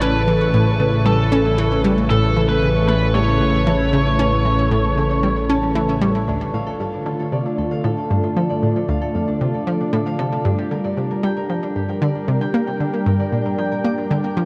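Ambient, sequencer-driven space music with a hypnotic, cosmic mood, cut from a longer piece and bathed in a huge, wet reverb. A round, detuned analog pluck plays a riff with chorus and delay throughout, beside a lush, warbling unison pad holding sustained chords up front and a ringing, fingerpicked Celtic harp tracing delayed arpeggios. At the opening, a biting, overdriven electric lead guitar plays a brief melody with delay until 5.7 s, while an evolving, wave-folded analog drone on A and a very quiet, bubbling, resonant stepped-filter texture sit in the background until 6.3 s.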